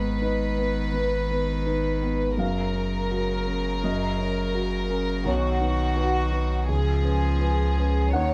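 A rubato 4/4 pulse around 83 BPM gives this brief neoclassical piano-and-strings passage, cut from a longer piece, a reflective, longing mood. A felt-muted upright piano sits up front with a soft, mellow, intimate tone, carrying the accompaniment across a broad range. Alongside it, a studio violin section carries the melody with a clear, pure, floating sound, bowed sul tasto and placed close to the listener. In the background, a single warm cello traces a second line with a gentle attack and smooth top, while a deep, clean sine sub bass anchors the low end with dark, sustained tones. All four parts play together in one room with a moderate ambience, moving through Abm, Gbmaj7 and B before reaching Db7 at 6.7 seconds.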